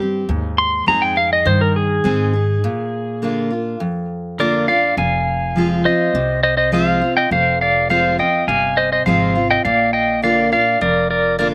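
Bright, compressed pedal steel guitar with slapback echo sits up front and carries the melody from 0.6 seconds, its slide and volume swells floating over a full-bodied, picked dreadnought acoustic guitar with audible finger squeak and a woody, thumpy pizzicato upright bass on gut strings, giving this brooding, dusty honky-tonk and classic country fragment a dry, open-air sound as the harmony moves from Ab through Bb to Fm.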